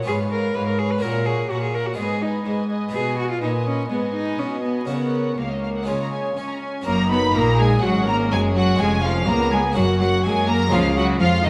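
This lively, brilliant baroque-style concerto movement in F# major at 124 BPM opens with period-style, gut-string violin sections, one carrying the melody and a darker one playing a second line, over a background viola section and a full, plucked Italian-style harpsichord. A solo cello joins almost at once with its own reedy melody above a bowed cello section bass line, and a rich double bass section enters at 6.9 seconds as the harmony arrives on F#. The ensemble sits in a reverberant recital hall with vinyl crackle, in a passage cut from a longer piece.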